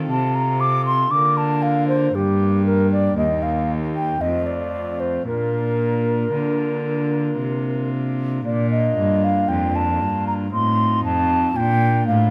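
Classical baroque-style sonata movement in Bb major at a slow 58 BPM in 3/4, serene and radiant, where a pure, woody flute with vibrato carries the tongued melody up front over a dark, reedy gut-string cello bass played by a single bowed player and a thick organ on foundation stops with romantic voicing, all in a moderate recital hall reverb, with a shift to a new section at 8.5 seconds.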